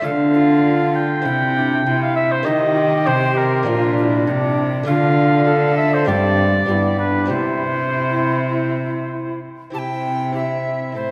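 A courtly, festive renaissance-style consort dance at 99 BPM in 4/4 and C major, cut from a longer piece, where a mellow, distant oboe carries the melody up front over an airy wooden tenor recorder with tongued chiff on the second line, a clear trombone and a delicate, fingerpicked double-strung lute sitting in the background, and a reedy, gut-string cello bowing the bass, all bathed in a wet church reverb, with a brief new section arriving at 9.7 seconds.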